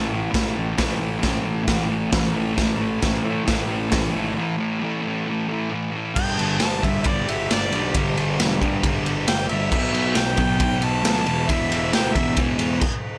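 A double-tracked fuzz guitar riff and a punchy, overdriven picked bass open this swaggering, raw garage rock excerpt at 135 BPM in a straight 4/4. The drums arrive at 0.3 seconds, a saturated acoustic kit sitting up front in a small, pumping room, with a punchy kick, a medium-tuned snare, hi-hat, ride and crash, and a gritty, rolled-off top. The guitar is compressed and distorted, sitting up front beside the drums, while the bass carries a direct-and-amped fuzz tone underneath, both riding an A5 chord before a break from 4.4 to 6.2 seconds. At 6.2 seconds a clear harmonica takes the solo melody in a pop style, its overdriven, smooth-topped tone marked by light vibrato and scooped notes, as the chords move through G5, Bm and E5. A light reverb surrounds the parts, and the band hits a stop at 12.8 seconds as the piece is cut short.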